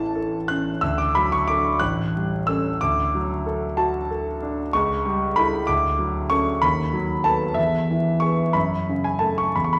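Warm and passionate, this short fragment of a romantic classical character piece for solo piano moves in 6/8 at about 62 dotted-quarter beats per minute in A major, shaped by free rubato. The concert grand sounds intimate and natural with deep bass and audible action noise, spanning A1 to F#6 as the harmony passes through A, D and A7 before turning to Dmaj7 at 5.7 seconds and B7/D# toward E, settling on F#m at 8.5 seconds. A wet recital-hall reverb gives a sense of hearing from further back in the room, and a vinyl crackle adds an aged patina.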